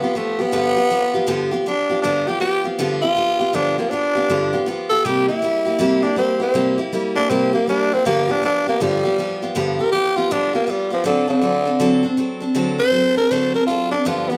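A growling tenor saxophone and a picked steel-string acoustic guitar start together, opening this clip of an upbeat, retro rock piece at 160 BPM in 4/4 with a swung eighth-note feel in G mixolydian, tuned slightly low. The saxophone carries the melody as a solo for the full 14.4 seconds, its tone raspy and gritty with vibrato, close-miked and up front in a pop style. The dreadnought guitar supplies the accompaniment with a bright, full-bodied sound, and finger squeaks are audible on its strings. The changes move from G7 to C7 at 5.0 seconds, back to G7, then to D7 near the end. The pair sound like a band playing live in one large studio, wrapped in a moderate reverb, and the clip is cut from a longer piece.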